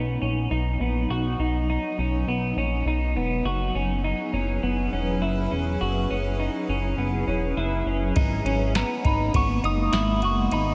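A clean electric guitar sits up front from the start, its picked, compressed arpeggios coated in lush chorus and tape echo, drifting over a haunting, hazy dream pop excerpt in G# minor at 102 BPM in a straight 4/4. Beneath it a granular cloud pad holds sustained chords, blurred and detuned with a moving notch and slow attack, while a chorused synth bass adds a glossy, nasal pulse-wave and sawtooth low end that stays dark yet forward. The harmony moves from B to F#7sus4 at 3.5 seconds, then settles on G#madd9 as a soft vintage rhythm box enters at 8.2 seconds with a deep analog kick, crisp snare, ride cymbal and tambourine. At 8.8 seconds a pure FM synth bell picks up the melody high above, its decaying notes softened by chorus, phaser and tape echo. The whole mix is soaked in a cathedral reverb, giving the piece a dreamy, suspended haze.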